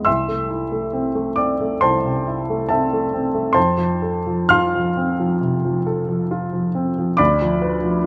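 A warm, up-front baby grand piano plays alone in this passionate, bittersweet romantic character piece in A minor, moving with rubato at 68 BPM from Am/C through F to Bdim/D across a brief 8.1-second fragment cut from a longer work, captured with close, detailed microphones and light reverb.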